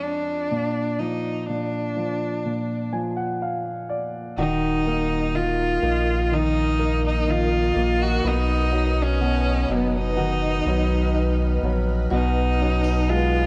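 A bright, intense bowed cello sings a longing melody with vibrato over an open baby grand piano in this slow, emotional pop ballad fragment, with a piano fill at 2.4 seconds before a deep, round sub bass and a fingerpicked steel-string acoustic guitar with audible finger squeak join at 4.4 seconds and an ethereal, airy pad with chorus and reverb drifts in at 5.4 seconds, all wrapped in a small room and the worn, warbling pitch drift of old cassette tape.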